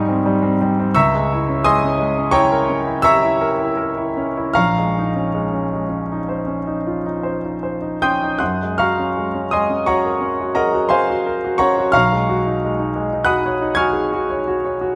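Impressionist classical solo piano, hazy and dreamy, drifting in rubato around 75-92 BPM in 5/4 across a 15-second fragment of a longer piece. An intimate, polished concert grand spans Bb1 to Ab6, its deep bass and long sustain coloring lush harmonies that move from Abmaj7 through Dbm6, Bbm11 and Gbadd9 to B69. Close, detailed miking keeps the piano up front with the noise of its action audible, while a moderate concert hall reverb of 1.9 seconds lends an airy halo.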